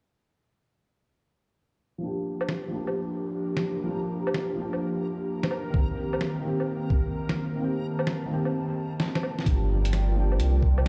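Heard through a big sound system in a bare room with large studio reverb, this rainy, ghostly future garage fragment opens at 2.0 seconds with a soft, intimate felt-muted upright piano, its action noise audible, sweeping through a low-pass filter with tape echo beside an airy, breathy pad carrying chorus and 12-bit sampler grit, both pumping to the sidechain over Gm7 and Cm7 chords. A faint reversed, granular texture swells behind them, while a muffled, pitched-down lo-fi sampler kit of hi-hat, snare and woodblock is joined at 5.7 seconds by a thumpy electronic kick that drops out for a stretch before a drum fill. At 9.5 seconds a deep, rumbling detuned saw bass arrives up front, also pumping with the sidechain as the harmony returns to Gm7.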